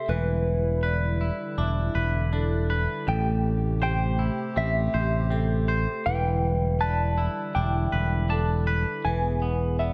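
A dark, clean electric guitar carries a tremolo-shaded melody with slapback echo over a hollow, flute-like chorused pad, twangy fingered guitar arpeggios and ringing vibraphone arpeggios, while a growly, punchy picked bass joins at 0.1 seconds in this brooding yet cathartic slow rock passage at 80 BPM, moving through Em7 and Am7 before settling on E at 9.1 seconds in light digital reverb.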